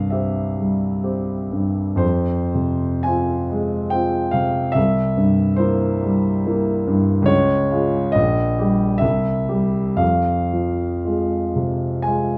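A grand piano opens alone on a C chord and settles into F minor by 2.0 seconds, setting a yearning, melancholic tone for this romantic classical nocturne. The piece moves in a slow, flexible 3/4 at roughly 54-72 BPM, its rubato pulse giving each phrase room to breathe. The piano sounds warm and open, with long sustain, and sits up front, ranging from Bb1 in the bass to Ab5 in the treble. The harmony passes through C7, Db and Eb over Bb before returning to C and arriving back on F minor at 10.0 seconds. A wet stone-room reverb gives the instrument a resonant, enclosed halo, and the tuning rests slightly below standard pitch at A4 = 439 Hz. The passage is cut from a longer piece and ends at 12.4 seconds.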